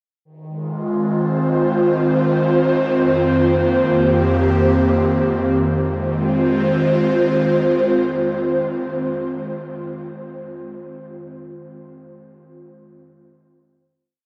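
An airy, breathy pad with a detuned, chorused sheen and tape echo plays alone in this serene, spacious ambient piece, moving from Fm7 to Cm7/F at 2.9 seconds before settling on a final Fm7 at 5.6 seconds, bathed in a huge, wet reverb and the warbling pitch drift of worn cassette tape.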